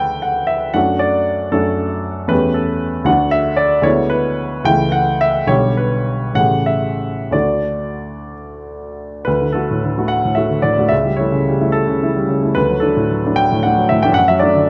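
Passionate and hopeful, this romantic character piece for solo piano moves in 6/8 with a flexible rubato feel. The grand piano sounds clear and up front, spanning A1 to G5, and close, detailed microphones keep its tone present. A moderate recital hall reverb gives the instrument a sense of space. The harmony moves between home chords and dominant sevenths, often over inverted bass notes, and arrives on D at 7.3 s before the opening phrase returns at 9.3 s. Cut from a longer work, it breaks off on a D/F# chord at 14.2 s.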